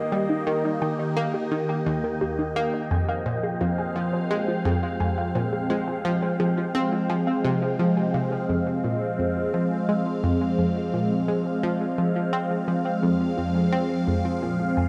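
Hypnotic and cosmic, this ambient space-music excerpt, cut from a longer piece, floats on a swirling, detuned pad with phaser and chorus holding sustained chords from Eb to Fm, while an airy, wind-like tuned noise texture breathes in the background. Up front, a round, wave-folded analog pluck with chorus and analog delay carries a low riff, and a warbling, lo-fi pluck with a nasal edge spins arpeggios further back, its filter sweeping until 8.5 seconds. A wet plate reverb soaks the mix, giving it a dreamy depth.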